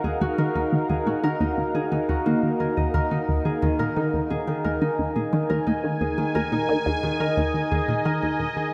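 Drenched in a lush hall reverb with a 2.8-second tail, this dreamy cut from a longer piece of ambient, sequencer-driven space music feels hypnotic and mysterious. It moves at 88 BPM in a straight 4/4 in Eb minor, opening on an Ebmadd9 chord. A sweeping resonant pad holds sustained chords with an evolving, detuned sawtooth tone, its slow attack and filter swell thickened by chorus. A fingerpicked Celtic harp rings out arpeggios through analog delay, while a squelchy blip pluck with a sub octave and noise layer drives a low riff, coloured by phaser, analog chorus and analog delay. All three parts sit up front as a filter sweep runs across the synth arpeggio sound, and the whole excerpt fades out from 6.6 to 8.7 seconds.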